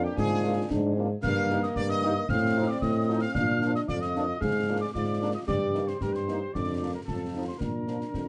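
Festive and proud, this short cut from a longer military-style march for wind band moves in a straight 2/4 stride. A clear trumpet section carries the melody with light vibrato and a slightly loose ensemble feel, while a mellow, hollow wooden piccolo sings a crisp-edged second line high above it. A clear euphonium adds another second line with a soft attack, and the warm tuba sits up front on the bass, the most present voice in the band. Farther back, a clear, close-miked trombone section holds sustained chords and a distant, roomy French horn section fills in the accompaniment from 0.4 seconds. Concert snare drum, concert bass drum and clash cymbals with bright cymbals drive the march from a small room, and the overall production is dark and dry, with the harmony cadencing home on Bb at 7.6 seconds.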